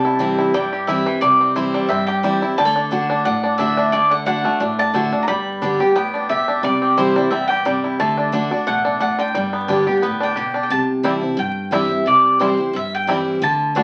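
A joyful, lively bluegrass excerpt opens with a round, mellow mandolin carrying the melody up front, alongside a bright, full-bodied dreadnought guitar picking the accompaniment and a twangy, percussive fingerpicked banjo rolling out arpeggios over a swung 4/4 feel. Beneath them a woody pizzicato upright bass sits very quiet, while the harmony cycles through C, D and G and the opening passage repeats from 10.7 seconds. The whole performance sounds like a very old 78 rpm record, crackling and dull at the top, with a wet studio reverb.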